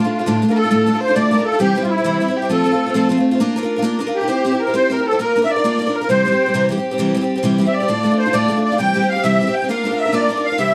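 A dark, reverberant studio sound frames this wild, lively Celtic slide in 12/8 at 134 BPM, cut from a longer piece, where a reedy, airy musette accordion carries the melody up front over a bright, picked twelve-string acoustic guitar with octave-doubled shimmer, while a clear, earthy bowed fiddle enters at 0.6 seconds with a second line in the background as the chords move from Dm through C, F and Bb.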